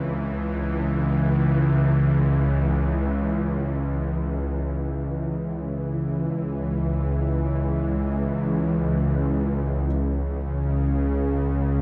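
Drenched in a huge, dark reverb, this fragment of a longer dark ambient drone piece drifts in free time with an ominous mood. A tense, bright, string-like drone with a sawtooth edge and vibrato sits up front from the start, spanning C#2 to E3 over a C#mmaj7 chord, while a clear, worn concert grand piano plays barely audible arpeggios until 9.9 s. At 9.9 s the harmony moves to C#m7, and shortly after, at 10.4 s, a deep, moody pad with a detuned sub octave and chorus enters in the background.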